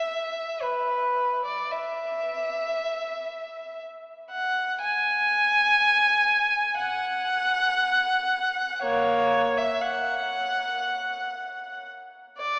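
Lyrical and serene, this short classical passage for unaccompanied violin is cut from a longer piece and feels expressive, moving in free time. A single bowed violin carries the whole 12.6 seconds alone, its tone rich, smooth and even, with vibrato. The line moves between Bb3 and G#5. A wet cathedral reverb with a 4.8-second decay surrounds the instrument, and the listener seems to hear it from further back in the room, lending it a distant quality. The sound has a small-speaker character, even as the long reverb lingers.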